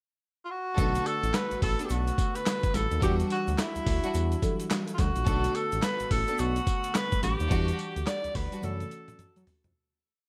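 A bright, 1980s-style digital production bathed in a moderate plate reverb opens this slick, confident new jack swing piece in B minor, moving at 107 BPM with a hard swing on the sixteenths. A warm tenor saxophone carries the melody from 0.4 seconds, soft-attacked and roomy with vibrato, spinning jazz-style call phrases out of short motifs. At 0.8 seconds the full band arrives for the chorus. A gritty, overdriven sampler-style drum kit sits up front with a thumpy kick, a snare layered with handclaps, hi-hat, tambourine and toms under gated reverb, while a smooth sawtooth synth bass bounces through a swung funk line full of muted ghost notes and chromatic approach notes. In the background, a lush, dreamy FM electric piano with a soft pad layer holds chorused, phased chords with grace notes, a studio string section punctuates with short syncopated stabs, and a grainy tube shaker ticks out sixteenths, as the harmony moves from Bm7 to Em9 and lands on F#m7 for a drum fill at 8.6 seconds while the whole piece fades out.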